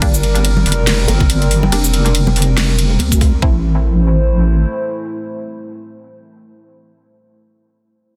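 A deep, wobbling bass with chorus sits up front in this dark, meditative deep dubstep excerpt at 141 BPM in a swung half-time feel, joined by a knocking, tape-tinged electronic kick and a layered dubstep kit with a huge snare and metallic hats that both drop out by 3.5 seconds, congas and bongos with dub echo in the background from 0.6 seconds, muted, detuned chord stabs with phaser and dub echo, and a moody, slow-blooming analog pad with chorus and phaser holding sustained chords as the harmony moves from G minor to A minor at 3.4 seconds, in a dense, heavily limited modern master.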